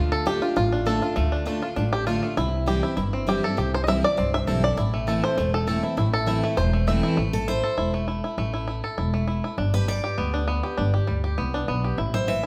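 A twangy, percussive fingerpicked banjo leads this haunting, driving bluegrass excerpt in A minor at 200 BPM with a light swing, taking the solo over a woody pizzicato upright bass and a bright, full-bodied picked acoustic guitar as the chords move from Dm through C and Am. At 7.2 seconds the guitar steps forward for its own solo, with G arriving at 9.6 seconds. The band plays live together in one room, washed in a large, wet studio reverb, with the banjo and bass sitting up front.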